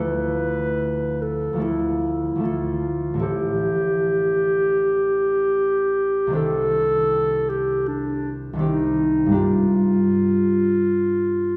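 A wet church reverb, with a decay of about 2.7 seconds, surrounds this short cut from a longer classical piece, an impressionist duo for clarinet and harp that feels wistful and hazy. In D minor and 4/4, it moves with rubato at roughly 69 to 82 BPM. A mellow clarinet carries the melody from D4 to B4, its soft attack and smooth top giving a classical, solo voice that sits up front. The concert harp accompanies across a range from A1 to A4, its bright, thumb-plucked strings ringing out close by. The harmony drifts through Dmadd9, Am7, Cmadd9 and Gm7, with the last chord arriving at 9.4 seconds before the passage breaks off at 11.6 seconds.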